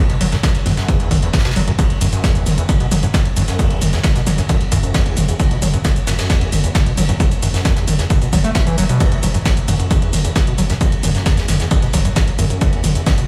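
A straight 4/4 pulse at 133 BPM drives this intense peak-time techno excerpt, where a punchy electronic kick entering at 0.4 s sits up front beside a squelchy, gritty overdriven acid bass riff carrying a filter sweep, distortion and sidechain pumping, while a deep saturated sine sub bass holds F#1 in the background, a techno kit adds metallic hats, shaker and toms, and a soft brush kit lays an airy ride and snare into a dreamy mix soaked in cathedral reverb.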